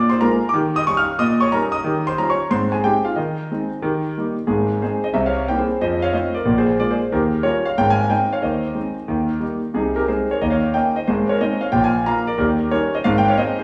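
Set in a wet stone room with a 1.2-second reverb tail, this swinging, exuberant stride jazz fragment features a solo concert grand piano, intimate and up front with deep bass, short sustain and audible action noise, romping through a chord progression across 13.6 seconds, with a new section arriving at 4.5 seconds.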